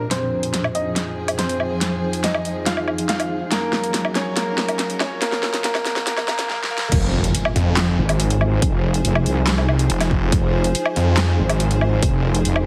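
A half-time 4/4 groove at 141 BPM drives this heavy, aggressive wobble dubstep passage, cut from a longer piece and set in F minor territory with a move to Gb and back. The opening build-up pairs a dark, intimate chamber string section, bowed sul tasto with light vibrato, with a blurred, evolving granular cloud pad in the background, both pumping under sidechain. A brilliant grand piano carries the melody through a filter sweep and tape echo, while the drum kit plays a fill with a huge snare, metallic hats, handclaps, woodblock and crash, all filtered and up front. At 6.9 seconds the drop lands with an electronic impact, a punchy, tape-warm layered kick and a saturated, chorused wobble bass in detuned unison. From 7.6 seconds a snarling, growling distorted saw bass with a moving notch joins, all within a heavily compressed, radio-like sound under moderate plate reverb.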